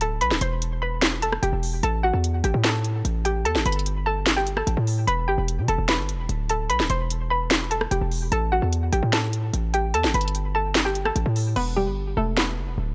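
From the first moment, a hollow, nasal square-wave pluck carries the melody over a heavy, punchy 808-style bass and an electronic trap kit with a sharp snare, crisp hi-hats, handclaps, rim clicks and crash cymbal, all set up front in a dry, close mix. This brooding, hard-hitting trap excerpt runs at 148 BPM in a half-time feel in A dorian, moving between Em and A5, while the detuned pluck's short, bouncy decay is shaded by chorus, low-pass filtering and delay. At 11.6 seconds the hi-hats drop out for the closing section, and the drums stop at 12.5 seconds as the pluck and bass play on to the end.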